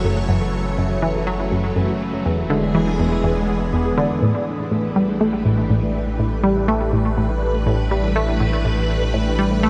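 Mysterious and expansive, this ambient excerpt at 122 BPM in 4/4 sets a tight, driving sequenced synth riff with a detuned sawtooth pluck, chorus and analog delay up front beside a swirling, vintage string machine holding bright sustained chords through ensemble chorus and phaser, while a round, deep analog bass anchors the low end and a mellow, ringing Celtic harp plays fingerpicked arpeggios with analog delay in the background, its filter sweep running from 0.0 to 4.2 seconds, as the chords move from F#m7 through E7 to A7(no3) at 4.2 seconds, all bathed in a huge, wet reverb within a dark, warm production.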